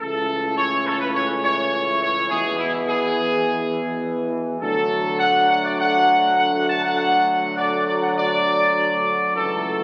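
A bright, up-front trumpet section carries the melody in this majestic, solemn classical brass passage cut from a longer piece, over clear, tight trombone chords, mellow French horns sitting distant in the background and a roomy tuba bass with light vibrato, all bathed in a wet scoring-stage reverb and heard through the crackle and muffled top of a very old 78 rpm record.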